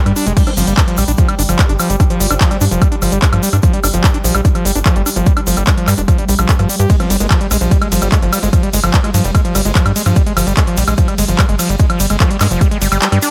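A dry mix opens this psychedelic trance excerpt, set at 147 BPM in G phrygian with a psychedelic, alien mood. Up front, a heavy electronic kick and a tight, punchy sequencer bass with a sawtooth filter pluck drive the low end, while a squelchy, gritty acid bass riff runs through distortion, digital delay and sidechain pumping. A tape-warm techno drum kit with smooth hats adds handclaps, crash and ride cymbals and woodblock, and a grainy egg shaker sits in the background. Behind them, an evolving wavetable pad holds dark, morphing chords, treated with phaser, its own reverb and sidechain pumping. A very quiet, detuned formant-sweep wobble bass appears twice, from 0.5 to 2.7 seconds and again from 7.0 to 9.7 seconds, and the kick drops out at 13.0 seconds.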